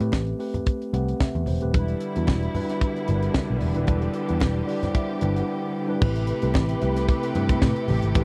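A tight funk drum kit sets a straight 4/4 disco groove from the first beat, its high-tuned snare, kick, hi-hat and crash sitting dry and mid-forward with a rolled-off top. A dark, round, foam-muted picked electric bass sits up front beside the drums, while very quiet low-tuned congas with a thick-skinned tone add a soft layer of percussion underneath. A mellow, clean tine electric piano heard through its built-in speakers plays the accompaniment and breaks into a fill at 0.7 s, and a lush bowed string section enters at 1.7 s with smooth, even sustained chords full of vibrato. The harmony moves from Am9 to Em7 and back to Am9, with a brief break at 5.5 s before the return. The mood is driving and sultry, captured as a close, dry 1970s-style studio recording in this short cut from a longer piece.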